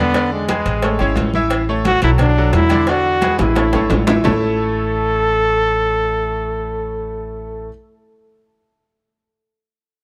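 Joyful and danceable, this salsa excerpt puts a smooth-topped solo trombone with light vibrato up front, carrying the melody over a brilliant, intimate grand piano whose action noise is audible and a woody pizzicato upright bass. In the background, thin-skinned congas, round low-tuned cowbell and bongos, and ringing agogo bells and timbales drive the groove, with a drum fill from 3.4 s before the percussion drops out at 4.3 s. Light reverb gives the band a sense of space.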